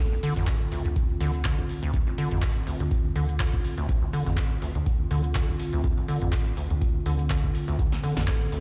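A squelchy, resonant square-wave acid bass riff sits up front with tape echo and a filter sweep running through all 8.6 seconds, over a warbling, lo-fi pad holding a Dm7 chord, a round, dark analog bass in the background, a deep electronic kick, punchy analog drum-machine snare, claps and metallic hats, and a faint, gritty sampled breakbeat kit, giving this trippy acid house excerpt at 123 BPM in D minor a pumping, swung feel in a large, reverberant room.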